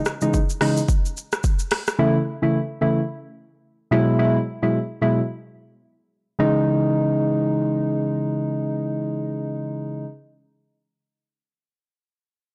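The recording sounds blown-out and overdriven, with a light reverb around it. This short afrobeats cut, taken from a longer piece, moves at 109 BPM in 4/4 with a 16th-note swing and a smooth, mellow mood in C# minor. An electronic, produced afro-pop drum kit sits up front with a deep kick, metallic hi-hats, rim clicks and shaker, its overdriven tone heard only between 0.1 and 2.0 seconds. Soft electric-piano-like synth keys carry the accompaniment from 0.2 seconds to the end, round and gentle with a sine-and-triangle character, a filter sweep, quick decaying notes and a chorus shimmer, all placed up front. The keys move through C#madd9, A and Eadd9 before returning to C#madd9 as a second passage begins at 6.4 seconds.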